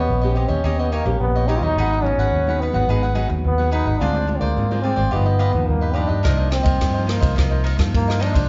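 A clear, distant trombone with jazz-style vibrato carries the melody in this lively, sunny samba and choro fragment at 107 BPM, over crisp picked cavaquinho, full-bodied fingerpicked nylon-string guitar with audible finger squeak, and a round, foam-muted vintage electric bass up front, while a compact cocktail drum kit with punchy kick, dark cymbals and rim clicks joins at 6.2 seconds, all set in the moderate reverb of a recital hall as the harmony moves from Eb7b13 to Cm11.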